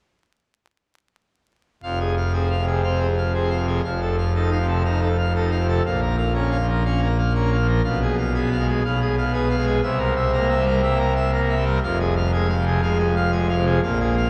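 Heard from deep in a cathedral's lingering reverb under a faint vinyl crackle, this stormy, majestic classical organ toccata fragment has a solo pipe organ on full registration with bright mixtures and a romantic voicing, brilliant and up front from 1.8 to 14.3 seconds as it moves from F minor through F7, B-flat minor, a diminished chord and C7 before settling back on F minor.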